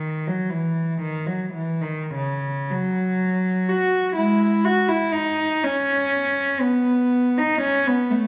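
Serene and lyrical, this 8.3-second classical excerpt for unaccompanied cello unfolds freely in E major at a slow, rubato 34-42 BPM in 6/8, with a single bowed cello playing sul tasto in a pure, floating tone that sits up front yet feels distant within the reverberant glow of a recital hall.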